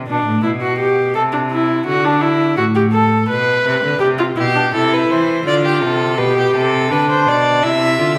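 A rich, gut-strung cello opens at 0.0 s, laying down a low bass line with light vibrato, and the viola follows at 0.1 s with an airy, nasal accompaniment played close and up front. This short passage, cut from a longer baroque-style fugue for string quartet, moves at 83 BPM in a straight 3/4 and sits in C major, with a mood that is both stately and lively. At 4.4 s a single violin enters with a reedy second line, its light vibrato and period-style bowing matching the cello's gut-string character. The harmony travels from G through Am/C, D, Bm and C to Dm, G/B and a closing C. The players sound as though they are in a church or concert hall, framed by a wet recital-hall reverb that lingers for about 1.5 s.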